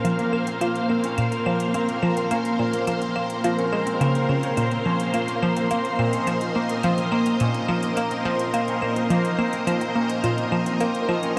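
A straight 4/4 pulse at 106 BPM, set by electronic hi-hat and claves with metallic hats sitting in the background, drives this expansive, mysterious stretch of sequencer-driven ambient space music in Bb minor, where an up-front analog pluck riff, round and nasal with chorus, phaser, tape coloring and delay, sits beside lush, vintage string-machine chords held on Bbmadd9 with a slow attack and ensemble chorus, while a ringing acoustic concert harp plays delayed arpeggios in the background, the mix sunk in a heavy shimmer reverb with a 7.6-second tail.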